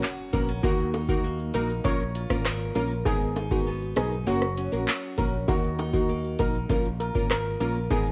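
A booming analog drum machine with a deep kick, metallic hats and handclaps opens this sultry, hypnotic dancehall excerpt at 99 BPM alongside crisp, detuned wavetable chord stabs and a bright picked acoustic guitar playing arpeggios in the background, with a barely audible electronic impact at 0.1 seconds before a shimmering steel pan melody, a round, dark fretless bass and very quiet high-tuned bongos join at 0.3 seconds over a cycle of F#, D#m, A#m and G#madd9, the stabs, guitar and pan carrying a cassette tape character and the guitar and pan trailing tape echo within a home-recorded digital ambience.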